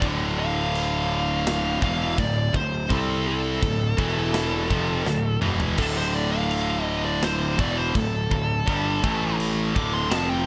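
Relentless and dark, this heavy metal excerpt moves at a straight 83 BPM in 4/4 and sits in D minor, cut from a longer piece. A high-gain lead guitar with a shadowy, distorted tone carries the melody as a solo from start to finish, ranging from A4 up to D6. Beneath it, three picked high-gain guitars play the riff in a bright, distorted layer: two sit in the background, and a double-tracked one is very quiet. Up front, a fuzz-driven picked electric bass adds a growly, punchy, overdriven low end. The tight metal drum kit has an airy, polished big-room sound, with bright china and crash cymbals, a medium-tuned snare, a tight kick and toms, and it plays a short fill from 5.1 to 5.8 seconds. Light reverb places the parts in a shared space as the harmony moves from Dm through power chords on C, D and E before returning to Dm and closing on A and D.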